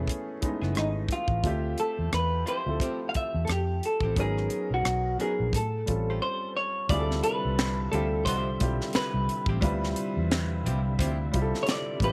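R&B in a neo-soul vein, late-night and sultry, with a swung 16th-note feel. A woody upright piano with audible action noise plays extended chords, opening on a rootless F#m11, over a round, foam-muted electric bass and a dry, up-front funk kit of finger snaps, hi-hat, tight kick, rim click and high-tuned snare. The melody comes from a warm, fingered semi-hollow guitar with subtle chorus, and a picked archtop guitar with slapback echo plays a second line. The drums drop out from 6.2 to 6.9 seconds, and at 6.9 seconds a very quiet tonewheel organ with rotary speaker enters on sustained chords.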